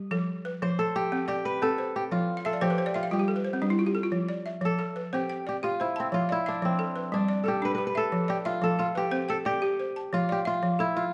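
Hypnotic and warm, this West African traditional passage cut from a longer piece moves at 120 BPM in a straight 12/8 in F lydian, with a woody, buzzing balafon, struck with hard rubber mallets and close-miked up front, spinning arpeggios from the start, a crisp, ringing fingerpicked kora entering with the melody at 0.6 seconds, a balafon fill at 2.4 seconds leading into a second section at 4.1 seconds, and chords circling around F, C5 and G, all set in a moderate recital-hall reverb.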